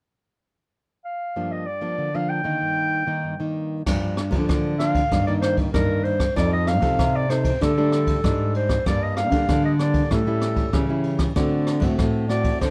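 A clarinet opens this nostalgic, bittersweet samba-choro passage at 1.1 seconds, playing a solo melody in a classical style with a warm, roomy tone that sounds set back in the space. At 1.4 seconds a fingerpicked nylon-string guitar joins in classical fashion, its fresh strings ringing through the accompaniment over Gm7 and Eb/G harmonies. A second fingerpicked nylon-string guitar takes the bass role from 3.9 seconds, and at the same moment a brushed jazz kit enters, heard from a distance in a small room, with dark crash and ride cymbals, a boomy kick drum and rim clicks. The harmony then moves through F7 and Dsus4 to Gm before turning toward A7 and D7, giving the short passage a yearning, unresolved lean. The parts sit close together in the mix, framed by a noticeable studio ambience.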